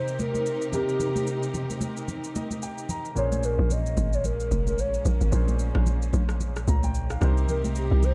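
A dark, lightly reverberant late-night amapiano excerpt in Bb dorian at 111 BPM, with a swung sixteenth feel, where a hollow, woody clarinet-like synth lead carries the melody through chorus, plate reverb and digital delay over an intimate concert grand piano, whose audible action noise comes through, and a lush bowed string section holding sustained chords on Cm7 and Bbm9. Soft-handed, high-tuned congas sit in the background beside a produced electronic shaker and rim click, and the piano plays a fill from 2.1 to 3.2 seconds. A very quiet round analog bass enters at 3.2 seconds, followed at 3.6 seconds by a bouncy, up-front log drum bass with a fast attack and a mellow, decaying tone that anchors the deep groove.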